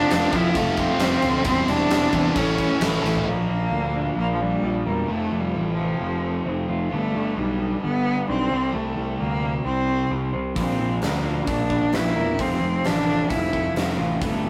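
A nasal, bowed cello carries the melody up front over a growly fuzz bass and layered riffs from distorted, high-gain and spring-reverbed overdriven electric guitars, while a big rock kit with a fat snare and bright cymbals drives this brooding, cathartic quiet-loud alternative rock passage at 132 BPM. After a drum fill at 3.0 seconds, the kit, the high-gain guitar and the overdriven guitar stop at 3.3 seconds, and a dark, lo-fi guitar through a small old amp enters with arpeggios beneath the cello, the bass and the remaining distorted riff, until the drums return at 10.6 seconds. The rough rehearsal-room recording has warm saturation and moderate reverb, and the clip is cut from a longer piece.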